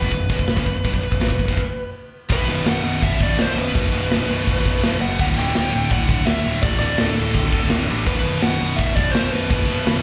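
A tight, up-front metal drum kit drives this relentless, heavy excerpt at 167 BPM in B minor, its bright cymbals, medium-tuned snare and tight kick ringing in a big, airy room while a dark, smooth overdriven lead guitar carries the melody with slapback echo and delay. Underneath, a growly overdriven picked bass and two scooped, high-gain distorted rhythm guitars with slapback echo pound out the riff in the background, and the music breaks for a stop from 1.6 to 2.3 seconds. At 2.3 seconds a third, very quiet double-tracked high-gain guitar joins the riff as the music moves from B5 to D5 and back, heard like a live club gig through the venue's sound system.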